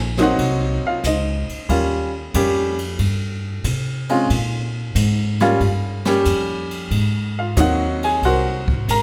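Sophisticated and relaxed, this short jazz piano trio passage, cut from a longer piece, moves with a gentle swing in 4/4. The upright bass opens the phrase at 0.0 seconds, its pizzicato gut strings giving a woody, thumpy foundation that sits up front. At 0.2 seconds the baby grand piano carries the melody with an open tone and short sustain, joined by a jazz kit played with brushes, its dark cymbals, medium-tuned snare and punchy kick sitting further back alongside hi-hat and ride. The harmony drifts through rich extended chords, from a rootless Ab9 through Eb9 and Bb7 to Bbm6 before settling back on Ab9. A moderate reverb, like that of a church or concert hall, lends the trio a spacious, polished glow.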